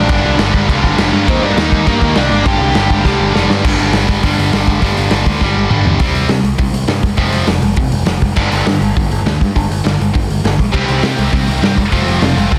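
A raw garage drum kit anchors this short, angry punk rock excerpt, sitting up front with a punchy kick, a medium-tuned snare and a dark, rolled-off top, and it drives through crash, hi-hat and toms at 203 BPM in a straight 4/4, with fills at 3.0 and 5.4 seconds. A crunchy overdriven guitar carries the melody only at the very start, dropping out at 3.3 seconds, while a double-tracked distorted electric guitar plays a bright, up-front riff throughout. Behind it, a heavy high-gain guitar, also double-tracked, adds a background riff at the opening and returns at 10.7 seconds. A growling picked electric bass, direct and amped with overdrive, holds down the low end from start to finish. In G minor, the harmony moves from Gm and Eb into power chords before closing on Cm and F. The sound is dry, dense and heavily limited, giving the whole thing a raw, aggressive edge.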